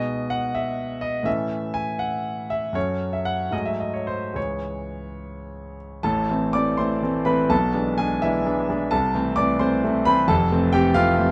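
Swaying in a rubato 6/8 that moves between 68 and 92 BPM on the dotted quarter, this short cut from a longer romantic character piece for solo piano feels stormy yet bittersweet. A single grand piano carries everything from 0.0 to 11.3 s, spanning F1 to D6, its tone clear, natural and intimate, placed up front with the noise of its action audible. The opening section rests in C# minor, passing through A and F# minor harmonies and a tense altered dominant before settling on C# minor. At 6.0 s the music turns to A minor for a second section, moving through E7 over B and A minor over C before resting on an F major seventh. A light reverb gives the instrument a modest sense of room while keeping its detail close.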